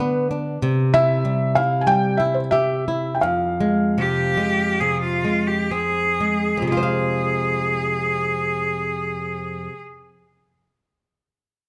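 In a rubato 4/4 that gradually slows, this passionate, longing fado-style ballad fragment sets a soft, intimate felt-muted upright piano melody, heard until 5.7 seconds, over up-front fingerpicked flamenco guitar with audible finger squeak, while a single bright, intense cello with light vibrato and a smooth top enters on a bowed second line at 4.0 seconds, the whole set in a moderate recital-hall reverb.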